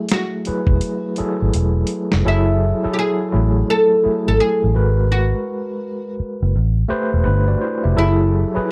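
A woody, plectrum-plucked oud with slapback echo carries the melody from the opening of this smooth, sultry neo-soul and R&B piece, over a barky, overdriven tine electric piano with fast tremolo through a combo amp. A dark, round, foam-muted electric bass enters up front at 0.5 seconds. A compressed, gritty sampler-style drum kit with a thumpy kick comes in at 0.1 seconds, plays a fill from 0.8 seconds and stops at 2.2 seconds, all set in a dry, close 1970s-style studio sound with a swung sixteenth-note feel over minor ninth chords.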